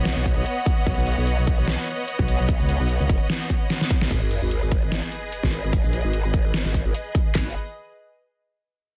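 Heavy and menacing, this half-time wobble dubstep excerpt from a longer piece pairs a growling, saturated bass and two overdriven electronic drum kits with a punchy kick, metallic hats, deep snares and handclaps against lush, bowed symphonic strings that pump under sidechain beneath a low-pass filter, while a drum fill at 3.7 seconds leads into an impact and a background sub drop at 4.1 seconds as the chords move from Badd9 to G#m in a dense, dry, heavily limited modern master.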